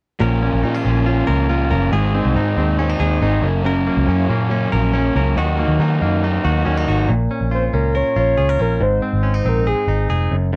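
Indie pop in Bb minor at 140 BPM, bittersweet and wistful, cut from a longer piece and captured as a dry, close 1970s-style studio recording. A raw, overdriven garage guitar plays the accompaniment until 7.1 s, while a bright, twangy clean electric guitar picks compressed arpeggios with slapback echo, and a dark, foam-muted picked bass sits round and up front beneath them. At 7.5 s a soft, mellow octave-layered synth lead carries the melody, its sine-and-triangle tone thickened by a sub octave, chorus and vibrato.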